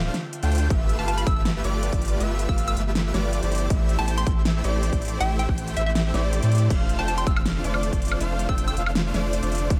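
A very quiet, ethereal pad, a soft dreamy lead with chorus, cassette-tape color and delay, huge detuned supersaw chords and a thick saturated sub bass open this lush half-time future bass excerpt at 160 BPM, tuned slightly flat to A4 = 437 Hz and moving through Dm7, G13, Am7 and F6. A big-room dance kit with a huge snare, crisp hats, crash and woodblock joins at 0.1 seconds, a punchy tape-colored electronic kick lands at 0.7 seconds, and the bass, supersaws, lead and pluck all pump against the sidechain. From 1.0 seconds a hollow, bouncy square-wave pluck with chorus and digital delay sits in the background, while the dreamy mix is bathed in digital ambience.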